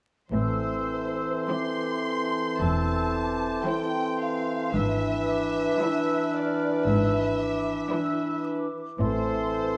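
A dark, vinyl-crackled recording in a moderate scoring-stage reverb captures this melancholic, yearning fragment of a slow romantic orchestral movement in A minor, moving at 50-58 BPM in 4/4 with a rubato feel and drifting from Am through E7/G# back to Am. From 0.3 s the lush, bowed violin section carries the melody with vibrato over rich cellos and double basses. Around it, a distant, hollow flute section, a solo clarinet and a roomy oboe weave secondary lines, a close-miked, mellow bassoon adds accompaniment, and French horns hold chords in the background. Between 1.5 and 8.7 s, a very quiet second violin line with a focused, smooth top and a background viola section enter together.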